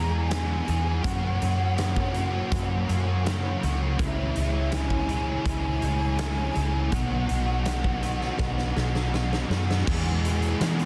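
Rock in a shoegaze and dream pop vein, this short excerpt feels wistful and blissful, moving through E, F#, C#m and B before landing back on E. A biting, overdriven electric guitar sits up front with a double-tracked, picked riff coated in analog chorus. Beneath it, a vintage fingered electric bass gives a dark, round, foam-muted low end with an amped character. A huge arena drum kit joins at 0.3 seconds with a fat snare, punchy kick, hi-hat and crash cymbal ringing in a big, natural room, and a drum fill runs from 8.4 to 9.9 seconds. Tucked in the background, a breathy, hollow jazz flute carries the melody with vibrato and tongued notes, its slapback echo trailing behind until it stops at 9.1 seconds. The dense, heavily limited modern master keeps the whole band thick and close within its studio ambience.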